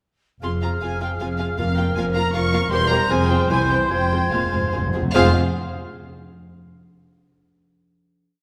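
Dramatic and stormy, this quick classical-period movement for symphony orchestra in F minor moves in a rubato 3/4 at around 143-161 BPM. A rich, smooth violin section with vibrato carries the melody over a second, softer violin section playing sul tasto, an airy silver flute, a warm clarinet, a vibrato oboe and mellow French horns holding sustained chords. Beneath them a lush viola section repeats notes, a focused cello section marks the bass on the beats, and a dark double bass section doubles the bass line. Calf-headed timpani join at 1.6 s with single strokes and play a fill from 3.9 s before the final chord at 5.2 s, all in a reverberant concert hall.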